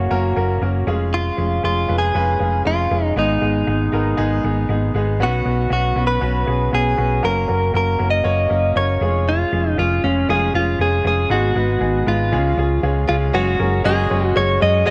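Piano-driven pop with an anthemic, hopeful mood, this snippet from a longer piece sets a picked, compressed clean electric guitar melody with a subtle chorus over polished, present baby grand piano accompaniment and a dark, round hollow-body bass, all up front in a moderate plate reverb, as the progression cycles through F#, C#/E#, G#m and Bsus2 before shifting to an F#sus2 at 13.3 seconds.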